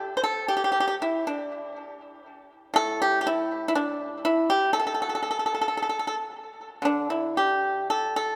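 A solo pipa, bright and percussive and played up front with fingerpicks, carries this elegant, serene fragment of Chinese traditional music, cut from a longer piece and running 8.4 seconds. The playing moves in a free, rubato 2/4 at around 56-61 BPM, spanning A2 to C5 and tuned to A4 = 439 Hz. Tape echo colours the pipa, and a moderate concert hall reverb of about 2.0 seconds gives the sound an airy sense of space.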